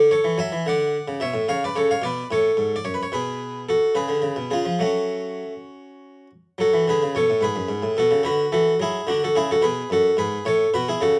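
A solo harpsichord, plucked and round with one set of strings in the French style, sits up front and mid-forward in this grave, solemn baroque-style suite movement in 6/8 with a free, rubato feel. Its harmony moves from D through dark half-diminished and dominant colours before settling on F# minor at 4.8 seconds, with a second phrase beginning at 6.6 seconds and returning home to F# minor at 9.9 seconds. A moderate large-studio reverb gives the instrument a sense of space in this short fragment cut from a longer piece.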